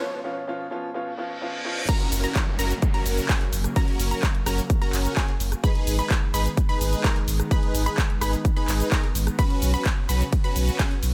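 The sound is dry and close, with little reverb, in this euphoric, triumphant fragment of festival progressive house at 128 BPM in F# major. It opens on an intimate, boxy grand piano with audible action noise, pumping under sidechain and trailed by digital delay as a filter sweep builds through the break. A reverse cymbal and downlifter enter in the background at 1.2 seconds, shortly before the drop lands at 1.9 seconds. The drop brings a punchy, layered kick up front and a produced dance kit of handclaps, hi-hat, ride, crash, rim click and cabasa. Huge, detuned supersaw chords carry the riff with a moving notch, a bright pluck arpeggiates high in the background, and a lush pad with chorus and slow attack sustains beneath, all pumping against the kick. From 2.1 seconds a deep, thick sub bass with tube saturation sits up front as the chords move from F# through G#m to Bsus2.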